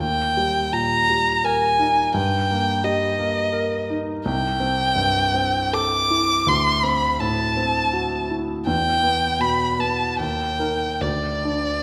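Romantic classical duo in Eb major, serene and tender, moving in a rubato 3/4 at 69-88 BPM across this 11.8-second fragment of a longer piece, where a close, up-front bowed violin sings the melody with soft attacks, vibrato and expressive portamento over a dark, mellow grand piano whose deep bass and audible action noise lend intimacy, the harmony drifting from Eb through Am7/C and D9 to Em before returning to Eb, all bathed in a wet concert-hall reverb.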